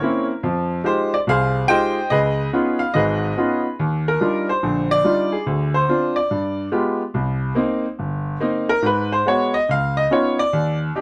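A clear, up-front concert grand piano opens this playful, swinging solo jazz fragment in Eb major at 143 BPM, its deep bass and open tone moving through Fm9 and Db9 before a solo passage from 3.8 seconds runs through Ebmaj9, Dm7b5, G7b9, Cm7 and Abm7 to Db9, captured with close, detailed microphones and light reverb.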